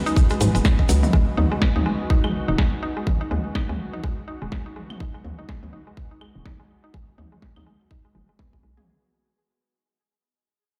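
Opening on a bubbling, resonant stepped-filter texture and a nostalgic, lo-fi tape-like pad under the whole passage, this sparse, quirky minimal techno excerpt in G# minor swings at 124 BPM as a woody, chorused mallet-like synth pluck with dub echo and a hollow, bouncy FM bass entering at 0.4 s pump against a tight up-front electronic kick, joined by punchy analog drum-machine hats and snare, a grainy tube shaker heard only until 1.1 s and delayed electronic toms and claves, while filter sweeps on the drums and the arpeggio and a fade-out play across the full 8.9 seconds inside a large, bare-room studio reverb.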